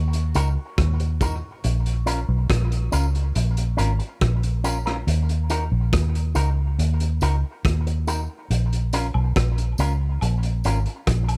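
Spacious and meditative, this dub reggae cut, taken from a longer piece, settles into a slow, straight groove that moves between E-flat minor and B-flat minor. A vintage muted fingered electric bass opens at 0.0 seconds and sits up front, its foam-muted tone dark and round with an amped character. A crunchy breakbeat drum kit joins almost at once with hi-hat, a tight kick and rim click, sounding saturated and gritty, its top rolled off in a small room. In the background, a tambourine and woodblock layer with egg shaker and group handclap enters at 0.3 seconds, carried on dub echo. An electric guitar with an envelope filter comes in at 0.4 seconds, bright, clean and twangy, its picked, compressed tone wobbling with a warbly pitch drift and trailing dub echo before it drops out at 10.8 seconds.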